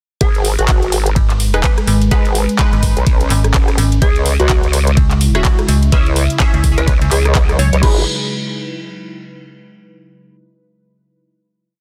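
A nasal, resonant wobble bass sits up front in this aggressive, swaggering bass house piece, its formant filter sweeping vowel-like through modulated phrases with changing wobble speed, coloured by chorus and overdrive and pumping against a knocking four-on-the-floor kick at 126 BPM in G# minor. From 1.2 seconds a metallic FM bass joins with chopped, tube-saturated phrases answering the other bass, while a swung garage kit adds metallic closed and open hats, handclaps, rim clicks, ride and crash. Beneath them an airy, evolving sawtooth pad holds sustained chords with a slow attack and a filter swell, its detuned layers and noise pumping to the sidechain. A glassy, crystalline wavetable pluck sits in the background with short answering phrases, warbling through chorus, cassette tape and digital delay, and from 1.5 seconds a band-passed chord stab drops sparse echoing hits, one shape moved in parallel through phaser and analog chorus. 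The harmony moves from G#m to C#m at 4.0 seconds and back to G#m for a final chord at 7.8 seconds, all within a dense, heavily limited modern master that keeps the sound dry and close.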